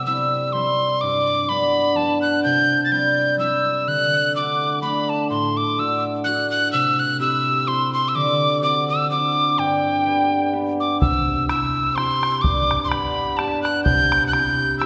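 Cheerful and rollicking, this Celtic folk waltz moves at 126 BPM in 3/4 with gently swung eighths, in a passage cut from a longer piece. An airy, up-front tin whistle carries the melody with vibrato and a crisp, chiffy attack, over a mellow, ringing fingerpicked concert harp that holds the accompaniment throughout. At 11.0 seconds a damped, tight bodhran joins, close and dry, while a lush concert-hall reverb lends the whole performance a spacious, churchlike glow.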